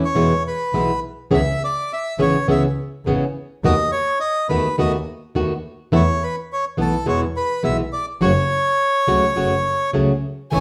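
Elegant and passionate, this rubato tango excerpt at 104 BPM in 4/4 sets a reedy, up-front bandoneon melody over dark, fingerpicked flamenco guitar and a distant, earthy bowed double bass with light vibrato, all moving through chords from E and C#m7 to B7/D#, Esus4 and F#m. The band plays live together in a wet stone room that gives the sound a resonant sheen. At 10.5 seconds a close, warm violin slips in with a soft, expressive bowed note and portamento just as the piece is cut off.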